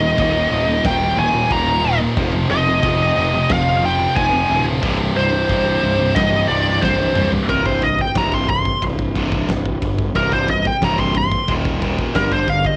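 Aggressive and epic, this heavy metal excerpt in C minor moves at 90 BPM in a straight 4/4, opening in a half-time feel before a drum fill from 6.8 to 7.5 seconds pushes into a lead guitar solo. The high-gain lead guitar sits up front, its bright, distorted tone carrying the melody between Bb4 and C6 with analog delay and a cassette-tape grain. Beneath it, a double-tracked heavy high-gain guitar grinds out a low riff until 7.5 seconds, while a second double-tracked distorted guitar, overdriven and placed in the background, keeps its own riff running throughout. A growly fuzz bass, picked and overdriven, anchors the bottom between C1 and G1. The big rock drum kit is dark and rolled-off on top, with a fat snare, punchy kick, crashes, ride and toms, all heard in a small room ambience that gives the whole piece the feel of a home recording on cassette.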